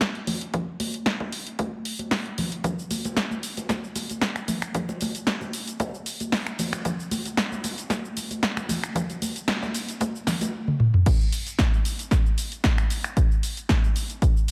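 A punchy, up-front electronic kick with a high-pass filter drives this sensual, groovy nu-disco excerpt with a lightly swung 16th-note feel, alongside a layered house kit of cabasa, finger snaps, hats, toms, crash and a punchy snare, all tape-saturated and bathed in studio reverb, while bright, high-tuned congas sit distant in a large room through the build-up until a drum fill at 10.7 seconds tips into the drop at 11.1 seconds.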